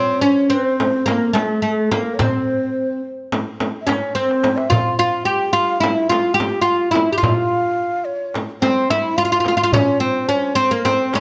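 Close, detailed miking with light reverb frames this soulful, hypnotic excerpt of a Turkish makam ensemble in 9/8, where a woody, fretless oud with double strings carries the melody up front, a breathy end-blown ney with vibrato traces a second line, and from 0.8 s a soft-handed clay darbuka sits in the background beside a small, bright, saturated frame drum played with hard hands, with a drum fill at 4.2 s.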